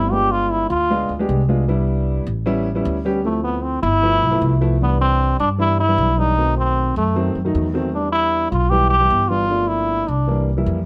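A trombone with a metal mute leads this sunny, danceable Afro-Cuban jazz passage, its buzzy, thin tone carrying light vibrato and scooped notes over a smooth top in a jazz-style solo that stands out through the first 4.8 seconds. Beneath it, a dark baby grand piano supplies mellow, vintage-sounding accompaniment, while a pizzicato upright bass with steel strings adds a woody, growly low end. All three instruments sit up front, with the trombone slightly the loudest. The harmony moves from G7b9 to Cmaj7 and through A7, Dm7 and G13 before a second section turns toward B7b9, Em7 and Gm9, landing on C9 near 10.3 seconds. Light reverb and a dark, warm production frame this brief cut from a longer piece.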